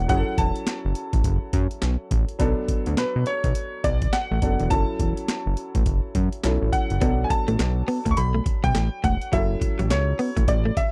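Bouncy and confident, this new jack swing excerpt moves at 104 BPM in B minor with a swung sixteenth feel, built on a gritty, thumpy breakbeat sampler-style kit of kick, snare, hi-hat and handclaps and a fat, detuned sawtooth analog bass with a plucky filter, both sitting up front. A clear concert grand piano carries the melody over its own short-sustained chordal accompaniment as the harmony alternates between F#m7 and Bm7. At 7.0 seconds a direct-recorded clean electric guitar riff with subtle chorus enters alongside a very quiet, saturated cowbell, all captured in a dry, close 1970s-style studio sound.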